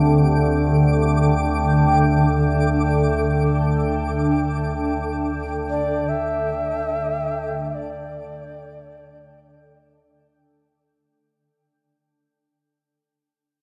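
In free time, this spacious, serene ambient passage rests on a shimmering, ethereal pad of sustained chords treated with chorus and phaser, a deep, round sub bass, a resonant drone with moving overtones, and a faint, twinkling granular texture sparkling high above. At 5.7 s a close-miked shakuhachi enters with an airy, reedy melody marked by chiff and vibrato, trailed by a diffuse delay. A cathedral-sized reverb and cassette tape colour give the sound a hazy depth, and the whole passage fades out from 2.2 s onward.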